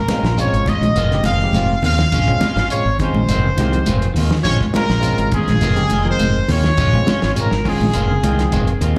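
Afrobeat in Bb dorian at 103 BPM, this nine-second snippet from a longer piece has a hypnotic, defiant mood, riding a light sixteenth-note swing as the harmony alternates between Bbm7 and Fm7. A clear, punchy horn section carries the melody up front, with light vibrato and a smooth top touched by slapback echo. The fingered electric bass sits dark, round and prominent beneath a cloth-damped drum kit whose fat snare, tight kick and hi-hat sound muffled, gritty and lo-fi, closing with a fill from 8.5 seconds. Congas add a bright, high-tuned, damped tone struck with hard hands from the background, while a grainy shekere hovers very quietly in the distance. A barky, lightly overdriven tine electric piano comps behind, and an electric guitar at the edge of break-up adds twangy stabs with subtle chorus, joined at 0.7 seconds by a clean, hollow-body guitar picking soft arpeggios. The whole band is heard through a club PA in a small, reverberant room, giving the feel of a live gig.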